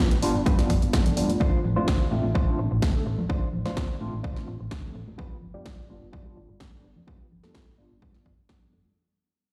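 An analog drum machine's driven snare and hi-hats open this funky, groovy excerpt of filtered disco house at 127 BPM, with very quiet, ringing tambourine and congas close behind, before an overdriven, punchy electronic kick arrives up front, the hats pumping against it. A dark, round hollow-body bass and a clean tine electric piano with phaser sit under a bright, compressed, picked guitar riff carrying 12-bit sampler grit, all three low-pass filtered and pumping over G7 and Dm7. A filter sweep and a fade-out run across the full 9 seconds, set in a stone room with echo-chamber reverb played through a big sound system.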